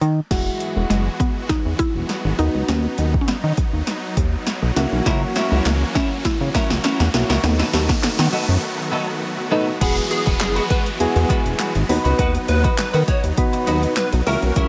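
Dance-pop excerpt at 101 BPM in B major, summery and upbeat, where a punchy overdriven deep house kit and a glossy, pumping chorused synth bass anchor soft electric-piano-like keys, lush supersaw chords, a woody mallet-like pluck melody, a twangy twelve-string electric guitar riff entering at 5.1 seconds, crisp group handclaps, background risers and downlifters, and a catchy phased unison lead with delay that arrives on the drop at 9.8 seconds after a short break.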